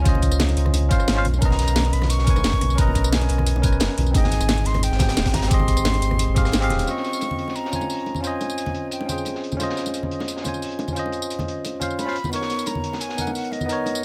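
Liquid drum and bass at 176 BPM in Db lydian, lush and warm, where a breathy, close-miked flute carries the melody through delay over bell-like, barky electric piano chords moving from Dbmaj9 through Cbmaj9 and Abmaj7, while a deep sine sub bass and knocking electronic kick drive the drop, the kick falling away at 6.4 seconds and the bass at 6.9, layered with a cracking-snare drum kit, a gritty, saturated breakbeat kit and bright compressed bongos and congas in a small room.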